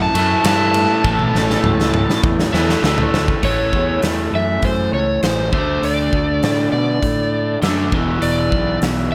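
Blues rock and southern rock power-trio cut at 100 BPM in 4/4, driving and gritty, opens in A mixolydian with an overdriven slide guitar solo and a drum fill from 1.0 to 3.4 seconds before shifting to A major, where the up-front slide melody rides over a dark, double-tracked picked guitar riff, a round, punchy fuzz bass, and a big acoustic kit with a punchy kick and bright stone-room character, all set in a moderate club reverb as the chords move from A to D5 and E5 in this excerpt from a longer piece.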